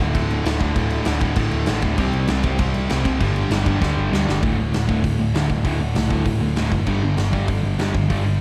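A straight 4/4 pulse at 196 BPM drives this rowdy, energetic punk rock piece, cut from a longer track. The big rock drum kit sits up front with a punchy kick, a medium-tuned snare, hi-hat and crash cymbal, all in a natural, big-room acoustic sound, and a drum fill at 3.8 seconds leads into the second section at 4.4 seconds. Underneath, an overdriven picked electric bass growls through its amp, while an overdriven semi-hollow guitar with a hollow-body tone and a bright, double-tracked high-gain distorted guitar play the riff in the background over D5, C5 and G5 power chords. A crunchy overdriven guitar joins the riff at 2.0 seconds and adds a warm layer behind the others. Small room ambience and a coat of vinyl crackle surround the band.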